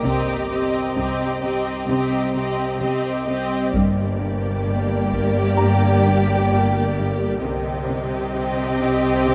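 Cut from a longer suspense film score, this ominous, eerie cinematic passage opens with lush, vibrato-laden violin sections carrying a soft-attacked melody and second line, while intense viola accompaniment, a close studio cello riff, background cello and double bass, a tense, string-like synth drone, a warbling lo-fi tape-like pad with chorus, and a dark, worn, boxy grand piano texture fill a reverberant concert hall, a focused high violin texture ends at 3.2 seconds, and a hard-sticked taiko ensemble strikes between 3.7 and 5.5 seconds.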